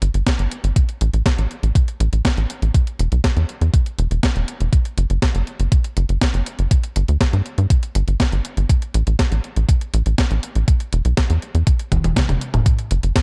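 A dark, dry production frames this melodramatic, danceable italo disco excerpt at 121 BPM in straight 4/4, tuned to A4 = 444 Hz, where a punchy, up-front sequencer bass of plucky sawtooth and square-wave notes drives from E1 to G2, a thumpy, tape-warm electronic kick joins at 0.3 seconds, and a clean 12-bit drum machine's hi-hat, medium-tuned snare and toms roll into a fill from 11.9 to 12.7 seconds before the cut.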